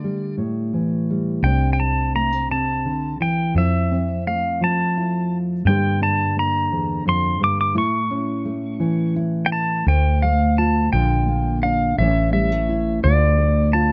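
An acoustic folk-pop ballad in D minor, heartbroken and intimate, moving slowly at 57 BPM in a straight 6/8 feel. An up-front, twangy pedal steel guitar sings the melody high in its range with fingerpicks, slide and volume swells, over a dark, fingerpicked nylon-string guitar whose classical tone carries audible finger squeak. A growly, round fretless electric bass joins at 1.4 seconds. The sound is close, detailed and nearly dry, and a break arrives at 7.8 seconds before the chords settle back onto D minor.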